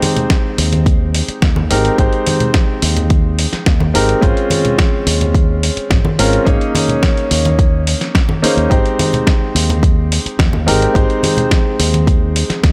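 A cut from a longer feel-good nu-disco groove opens with a smooth, vintage grand piano up front, pumping under sidechain compression and trailed by analog delay, alongside the gritty hi-hat and snare of a dusty soul-style sampled kit heard in a large room, and bright, saturated congas. A punchy, layered electronic kick arrives at 0.3 seconds, followed at 0.6 seconds by a fingered electric bass run through an envelope filter, its direct, amped tone keeping the straight pulse groovy beneath the piano's major-seventh harmonies.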